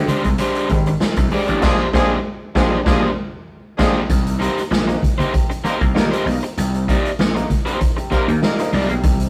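A straight 4/4 funk groove rolls along on a boomy, big-room drum kit up front, a growly overdriven slap bass and damped, thick-skinned congas tucked behind, giving the cut a funky, driving push. A crunchy electric guitar sits forward alongside, while a worn, woody upright piano with audible action noise and tape echo adds stabs in the background as the harmony moves from Bb13 to Cm7 at 4.1 seconds. At 1.6 seconds a mellow, tight horn section with vibrato and octave doubling enters at a distance on a band accent, and the whole piece has the rough character of a rehearsal-room recording with saturation and moderate reverb.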